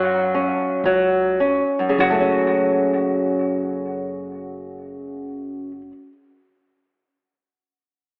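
In a free, rubato two-beat pulse that slows over the first 2.0 seconds, this short, mournful fado-style ballad fragment unfolds with passionate intensity. A fingerpicked flamenco guitar sits up front with a subtle chorus, while a picked, double-strung mandolin carries the melody through analog delay, and a woody pizzicato upright bass murmurs in the background. The dreamy mix is soaked in a lush hall reverb over a small room ambience, with a cassette-tape grain and a narrow telephone-like tone.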